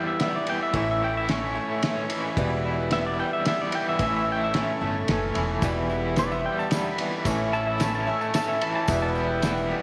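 A steady waltz-time groove from a muffled, cloth-damped drum kit with a fat snare and dark cymbals, plus woody pizzicato upright bass, carries this reflective, dusty folk and heartland rock excerpt, where a bright, clean pedal steel guitar takes the solo with fingerpicked slide lines and volume swells over a boxy swing-style acoustic guitar, a crunchy double-tracked overdriven electric riff with tremolo up front, very quiet reedy accordion chords, and a jingly tambourine that joins in the background at 5.6 s, all bathed in a wet echo-chamber reverb.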